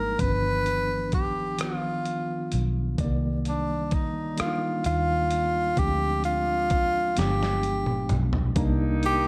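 This slow six-eight R&B piece in C minor moves at 43 BPM with a yearning, sultry mood. A close-miked tenor saxophone carries the melody up front, its jazz-style solo phrasing marked by scooped notes and a warm tone. Beneath it, a mellow tine electric piano plays clean accompaniment through its built-in speakers, while a dark, round, foam-muted electric bass holds down the low end. The sampler-style drum kit sounds gritty and compressed, with a thumpy kick and fat snare re-recorded in a large room. It plays a fill from 7.2 to 8.6 seconds as the chords pass through G7b9 back to Cm9, and at 8.6 seconds a distant, roomy horn section adds tight stabs as the cut closes.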